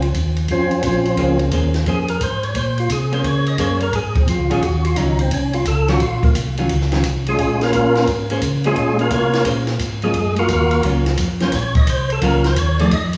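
A fat, lightly overdriven tonewheel organ takes the solo up front from 0.5 seconds, its percussive attack and key click colored by a slow rotary speaker, chorus vibrato and slapback echo in this late-night, soulful swinging soul jazz organ trio excerpt. Beneath it, a second, mellow tonewheel organ carries a round, clean bass line through its own slow rotary speaker, while a compact cocktail kit with dark cymbals, a high-tuned snare and a punchy kick keeps time and a picked hollow-body archtop guitar with slapback echo adds electric accompaniment from 1.2 seconds. Heard as a live gig through the venue's PA with a lush hall reverb and club ambience, the harmony moves from Bbm9 to Gbmaj7 at 10.1 seconds.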